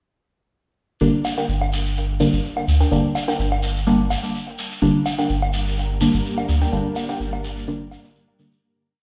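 A stone-room haze hangs over this short, meditative dub techno piece in G minor at 126 BPM, where deep, dark chord stabs with chorus, phaser and dub echo sit up front over a round sub bass, a distant grainy shekere and an echoing low woodblock keep a lightly swung groove, a warbling lo-fi pluck riff drifts above, and a blurred granular pad enters at 5.5 seconds as the whole groove fades out from 6.1 seconds.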